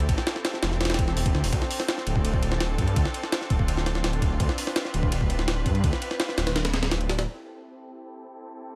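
This drum and bass excerpt from a longer jungle piece runs at 167 BPM in a straight 4/4, driven by a compressed, pitched-up sampler-style kit of gritty, thumpy kick, high-tuned snare, hi-hat and ride cymbal, sitting up front with tape-warm grit in a small room ambience. Beneath it, a detuned saw bass spanning D1 to G2 holds thick, beating, saturated notes with a fast attack and a menacing weight, also placed up front. A distant, smooth symphonic string section sustains bowed chords between C4 and B4 through a low-pass filter, its light vibrato giving an atmospheric sheen against the frenetic drums. The harmony moves from Am7 to Dm7 at 1.5 seconds and returns to Am7 at 7.3 seconds, when drums and bass stop and the strings carry on alone under a filter sweep until 8.8 seconds. A digital ambience surrounds the whole mix, adding to its atmospheric mood.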